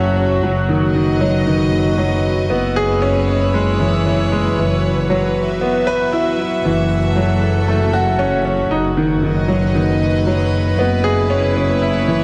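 In a straight 4/4 pulse, this hypnotic, intimate piano and strings electronica fragment sets a clear, up-front grand piano riff, coloured by tape echo and shimmer reverb, over chords such as B/F#, C#m7/F# and Esus2/F#. Beneath it, a bowed symphonic double bass section holds a smooth, even F#1 with light vibrato, while a close chamber string section sustains soft-attack sul tasto chords, pure and floating in shimmer reverb. The whole cut sits in a moderate scoring-stage reverb, with every part playing throughout the 12.2 seconds.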